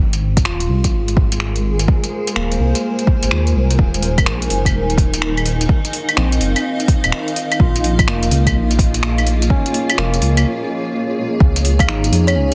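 A dense, heavily limited master with vinyl crackle and light reverb frames this nocturnal, wistful stretch of swung future garage, taken from a longer piece. An up-front overdriven kick and a large-room drum kit of claves, finger snaps and metallic hats sit over a rumbling, detuned saw bass, while a blurred granular cloud pad and a barky, gritty tine electric piano, run through a filter sweep and dub echo, pump against the kick. After a break at 10.5 seconds, a woody, close-miked kalimba enters at 11.8 seconds with a short tape-echoed melody.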